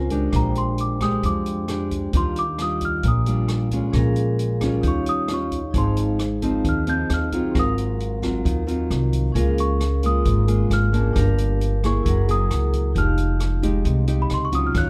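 This dark, warm production sits in light reverb and is cut from a longer piece: a breezy, sunny bossa nova in 4/4 at 133 BPM with a straight feel. It opens in Eb major and moves to Ab major at 5.7 s, with rich chords such as Bb13, Ebmaj9, Db6 and Fm9 colouring the harmony. A small celesta carries the melody as a solo from 0.4 s, its delicate, sweet, bell-like tone struck with hard felt hammers and set in plate reverb. Beneath it, an up-front nylon-string guitar is fingerpicked with a small, intimate sound, while a vibraphone with medium hard mallets adds a metallic, airy ring shaped by slow motor vibrato. A woody, thumpy pizzicato upright bass on steel strings anchors the low end up front. An open jazz drum kit recorded naturally in a small room keeps time on hi-hat and rim click over a boomy kick.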